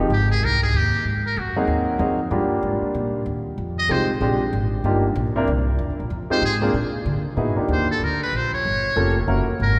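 A present, long-sustaining grand piano and a woody, thumpy pizzicato upright bass open this playful, swinging small-group jazz fragment in Eb major at 190 BPM, with a muted trumpet entering almost at once. The trumpet carries a buzzy, brilliant solo with vibrato and a forceful, punchy attack, its thin metal-muted tone sounding distant and roomy. It breaks off after its opening phrase, slips in a short figure near 3.8 seconds, and returns at 6.3 seconds, all of it bathed in the long, wet reverb of a church.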